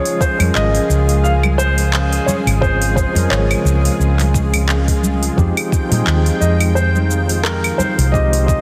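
This short sunset chillout excerpt opens with a dark, mellow baby grand piano carrying the melody over a tine electric piano, whose clean tone runs through a combo amp with fast tremolo, both touched by digital delay. A lush, detuned unison pad holds sustained chords beneath them, its bright sawtooth-and-square sound thickened by chorus and a vintage 12-bit sampler grit. At 0.1 seconds a produced R&B kit of claves, handclaps, metallic hi-hats and shaker enters, joined at 0.2 seconds by a soft electronic kick, both tape-tinged and set in studio reverb. From 0.4 seconds a round, hollow-body fingered electric bass sits up front, while very quiet, thick-skinned congas played with hard hands stay in the background until 7.9 seconds. At a relaxed 87 BPM in 4/4 with a gentle 16th-note swing, the smooth groove moves from Dbmaj7 to Fm9, finished with light reverb, digital ambience and a dense, heavily limited modern master.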